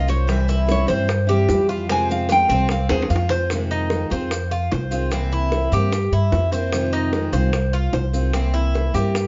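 A softly rolled-off studio sound with moderate reverb frames this nostalgic, danceable fragment of Cuban son and guajira in F minor at 149 BPM: a fingerpicked nylon-string guitar carries a deep classical melody until 3.0 s, a metallic, double-strung tres plays arpeggios up front beside a woody, thumpy pizzicato upright bass, and a bright steel-string guitar with finger squeak picks the accompaniment, while tight, high-tuned bongos enter at 0.3 s with a fill at 2.9 s and grainy maracas sit in the background over C, Fm7 and C7 chords.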